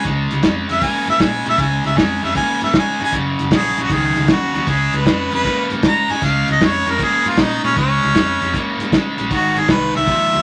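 A clear, up-front harmonica solos for the full 10.4 seconds with light vibrato, tongue slaps and scooped notes in a jazz-inflected voice over a laid-back, rollicking electric blues shuffle at 155 BPM in Db mixolydian, driven by an overdriven, picked electric guitar riff with spring reverb, a round, foam-muted fingered electric bass and a dark soul drum kit with a tight kick and rolled-off top, all set in a moderate club reverb as the chords move from Db to Gbadd9, back to Db and on to Ab at 9.3 seconds.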